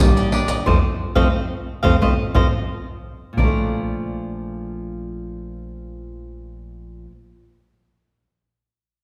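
Maracas, pandeiro and a deep surdo stand up front with a hard-handed, vintage, band-limited sound, playing from 0.2 to 3.5 s under a band accent and closing with a drum fill that ends at 3.4 s. This playful, joyful samba-and-choro fragment in Bb major moves at 89 BPM with a straight feel. A fingerpicked classical nylon-string guitar sits up front with audible finger squeak, crisp picked cavaquinho rides above it, and a woody, thumpy pizzicato upright bass stays in the background as the chords pass from Ebmaj7 to F7 and settle on Bbmaj7, all inside a wet scoring-stage reverb that suggests a church or concert hall.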